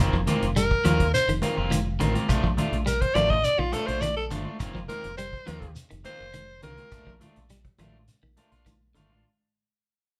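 Driving and hypnotic, this afrobeat fragment is cut from a longer piece and plays out as a saxophone solo over a fade-out lasting its full 9.2 seconds. A raspy alto saxophone sits up front with an edgy, gritty tone and vibrato, carrying the melody from 0.6 to 7.2 seconds over chords that alternate between F7sus4 and Bbmaj7. Beneath it, a twangy, slightly broken-up electric guitar plays picked stabs, while a clean electric guitar picks arpeggios further in the background. A deep dub fingered bass gives a dark, round, punchy foundation, and a vintage drum kit with a punchy kick, hi-hat and rolled-off top pumps in its small room. High-tuned, ringing congas and a grainy shekere sit in the background, with woody claves very quiet and dry, all captured as a band playing live in one room with light reverb.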